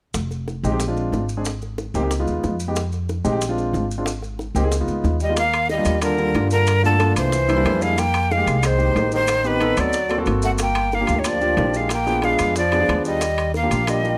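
Sunny and lively, this Afro-Cuban jazz excerpt opens on a woody pizzicato upright bass up front, with tight, high-tuned bongos in the background and grainy, mellow maracas in a small room. A concert grand piano joins at 0.6 seconds, warm and intimate, with audible action noise and long sustain as it comps through the minor-seventh and dominant changes. At 5.2 seconds a breathy, bright metal jazz flute takes the melody up front, its crisp attack, chiff and vibrato clearly heard, and the harmony soon opens onto richer ninth and eleventh chords. At the same moment as the flute, a brilliant trombone adds a second line in the background, with soft attacks, scooped notes and light vibrato. Ringing metal-shell timbales fill out the percussion soon after, and a light reverb gives the band a gentle sense of space.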